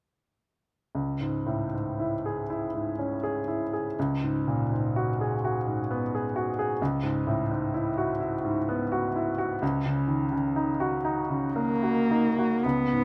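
Close, detailed microphones and a moderate scoring-stage reverb give this hazy, wistful impressionist excerpt an intimate, up-front presence, with the baby grand's action noise audible beneath its clear, natural tone. In a slow, rubato 3/4 at 54-66 BPM in C# minor, the piano carries the accompaniment alone from 0.9 s through gently shifting harmonies. At 11.6 s a single bowed cello enters with the melody, rich and expressive, its soft attack colored by vibrato and portamento.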